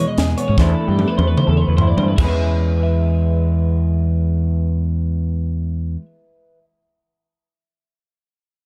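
In straight 4/4 at 149 BPM in E major, this wistful yet bright math rock and midwest emo excerpt pairs a dark, fingered clean electric guitar with spring reverb and a twangy, compressed twelve-string electric guitar picking chorus-tinged arpeggios over a growling, overdriven fingered bass sitting up front, while a crisp fusion kit with a punchy kick, high-tuned snare and dark cymbals plays only from 0.2 to 2.3 seconds, its fill running from 0.6 seconds, as the chords move from E6 through C69/E and back to E6 at 2.2 seconds in a dark, lightly reverberant production.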